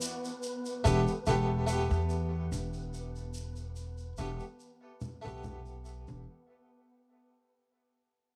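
A lightly swung 72 BPM trip hop groove opens on distant tube shaker and congas heard in a large room, alongside an airy, breathy wind-like noise texture with dark built-in reverb and cassette tape grain. A brilliant, close-miked harpsichord with tremolo and tape echo enters at 0.8 seconds over a Gadd9/E chord, and a woody pizzicato upright bass sits up front from 0.9 seconds. The smoky, cinematic fragment carries the small-room feel of a home cassette recording and fades out across its full 6.3 seconds.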